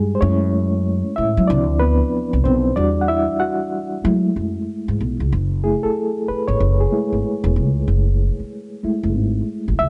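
A bright, reedy electric piano with a fast tremolo leads this soulful, sultry swung neo-soul R&B excerpt through F#m9, Dm9 and Em9 chords, while a woody pizzicato upright bass sits up front beside it in a small room with a dark production.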